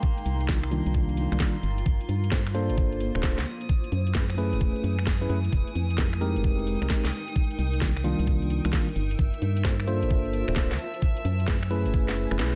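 A bouncy, skippy two-step UK garage groove at 131 BPM in 4/4, with a 65% swing on the sixteenths, drives this short cut from a longer piece. An up-front, knocking electronic kick runs from the start until it drops out at 12.4 seconds, where the band hits an accent. It is joined by a layered garage kit of finger snaps, metallic hi-hats and a cracking snare, both wrapped in studio reverb. Underneath, a dark, hollow FM bass with an organ-like, percussive attack sits up front, while a mellow, clean tine electric piano plays stabs through tape echo and a low-pass filter that sweeps across the whole passage. Sustained chords from a soft-bowed, floating violin section and a blurred, detuned granular pad with its own reverb both pump under sidechain compression, cycling through Cm11, Gm11, Gbm11 and Fm11. The dry, dense master is heavily limited and sounds modern.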